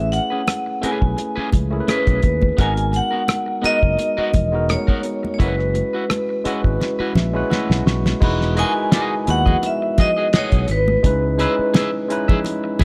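A ringing vibraphone struck with hard mallets carries the melody in this excerpt of lush 1970s-style soul, its bright, airy tone shimmering with a fast motor vibrato. Beneath it, a barky, clean tine electric piano accompanies and adds a fill alongside a drum fill from 6.8 to 8.2 seconds, leading into a new section. The cloth-damped drum kit sits dry and up front with dark cymbals, a fat snare and a tight kick, while a fingered electric bass gives a punchy, amped low end. A twangy electric guitar at the edge of break-up plays a riff, and high-tuned congas with a thick skin add close percussion in the background. The smooth, romantic groove moves at 85 BPM with a light 16th-note swing through Amaj9, G#m9 and F#7sus4, then Emaj9 and C#m7, all set in a small room.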